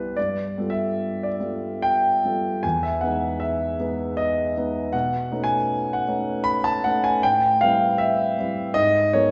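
Serene and hazy, this short impressionist solo piano passage, cut from a longer piece, drifts at 78 BPM in a rubato 3/4 through lush extended harmonies such as G9, Emaj7, B9 and Am9 before settling on Abm9 near 8.8 seconds. The grand piano, spanning E2 to B5, sits up front with a warm, intimate, natural tone, long sustain and audible action noise. A wet recital-hall reverb with a 1.4-second tail surrounds it, and the recording's softened top end adds to its hazy glow.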